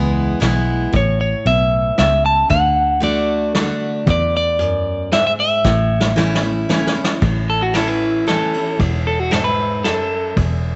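A twangy electric guitar at the edge of break-up carries the melody up front in this nostalgic, sunny honky-tonk waltz, over a bright, full-bodied jumbo acoustic guitar, a round, foam-muted vintage bass and a brushed vintage drum kit whose fill at 5.6 s leads into a clean guitar solo from 7.2 s, all bathed in a moderate echo-chamber reverb with a rolled-off, vintage top end in this short excerpt cut from a longer piece.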